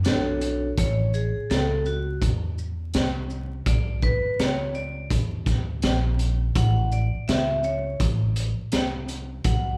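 Smoky, mellow jazz-hop at 83 BPM with a 16th-note swing, where a ringing, metallic hard-mallet vibraphone with its motor off takes a solo from 0.8 seconds over Bm9, A and Bmadd9 harmony, backed by a crunchy, gritty breakbeat kit of tight kick, high-tuned snare, hi-hat and shaker with a rolled-off top, and a woody, growly pizzicato upright bass, all played live in one room with a large studio reverb and vinyl crackle in this short cut from a longer piece.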